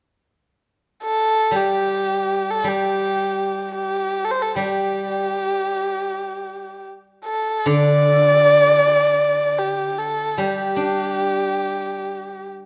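Graceful and pastoral, this fragment of traditional Chinese chamber music unfolds in free time, tuned to A4 = 438 Hz, as a close, intimate single-player erhu carries the melody from 1.0 s with vibrato, portamento and an airy, soft-attacked bow, sitting up front over a steel-string zither that enters at 1.5 s with bright, silvery, ringing fingerpicked accompaniment, the pair set in a moderate recital-hall reverb.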